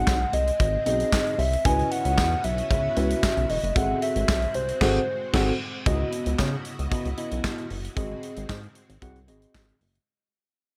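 A light reverb and small-room ambience give this early-eighties boogie funk fragment a close feel, with a danceable, late-night mood over a straight four-beat pulse. Up front, a punchy acoustic drum kit with bright cymbals, a medium-tuned snare, hi-hat, crash and handclaps drives the groove alongside a retro, nasal synth bass built from pulse and sawtooth waves with chorus and pulse-width modulation. A mellow, clean tine electric piano carries the accompaniment through lush chorus, while a shimmering vintage string machine of violins holds soft-attack chords with a long release, and a jingly tambourine sits in the background. A hollow, woody clarinet-like synth lead with vibrato, chorus and slapback echo sings the melody until 5.6 seconds, just after the band hits an accent from 4.8 seconds. From 5.9 seconds the minor-eleventh and dominant chords continue as the piece fades out.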